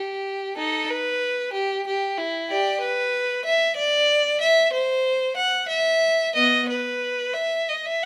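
In a rubato 6/8 at 62 BPM by the dotted quarter, this introspective, grave baroque-style suite movement in E minor, tuned to A4 = 439 Hz, features a single unaccompanied violin played up front with a rich, focused bowed tone, vibrato and a smooth top, moving between B3 and F#5 in a moderate stone room reverb across a brief 8.1-second passage cut from a longer piece.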